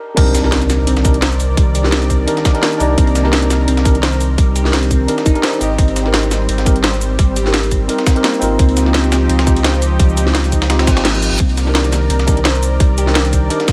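A tight, up-front electronic kick drives this soulful, rolling slice of liquid drum and bass, with a round, deep sub bass sitting just as far forward beneath it. Above them, a layered kit with a cracking snare and metallic hats re-recorded in a small room blends with a gritty, compressed sampler-style kit kept in the background. A worn, slightly out-of-tune electric piano opens alone before the drop at 0.2 seconds, then carries the accompaniment through delay. It is joined by a thick, warbling unison pad of detuned sawtooth chords and a soft, harp-like pluck ringing out arpeggios through chorus, phaser and tape echo. The harmony moves from Cm9 through Abmaj7 and Dbmaj9#11 before returning to Cm9, with a very quiet impact at the start and a reverse cymbal at 10.9 seconds marking the turn.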